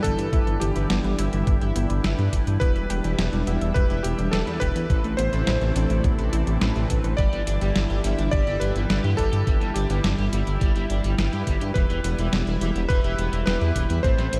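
This uplifting, nostalgic synthwave excerpt in G major moves at 105 BPM in a straight 4/4, opening at once with a thumpy, tape-warm electronic kick and a detuned 8-bit drum machine supplying hi-hat and a medium-tuned snare. Up front, a deep, rumbling saw bass with tube saturation anchors the low end, while a smooth, warbling analog pad holds sustained chords in the background, colored by chorus and sidechain pumping. A clear electric grand piano with a clangy, vintage character carries the melody through tape echo, joined by glossy, retro polysynth stabs that pass through cassette tape and tape echo, and a very quiet, round analog pluck spinning arpeggios until 7.1 seconds. At 7.2 seconds a bright, overdriven, double-tracked electric guitar riff enters in the background, dressed in lush chorus and tape echo. The harmony cycles through G6, Em and Amadd9, all set in light reverb and a digital ambience.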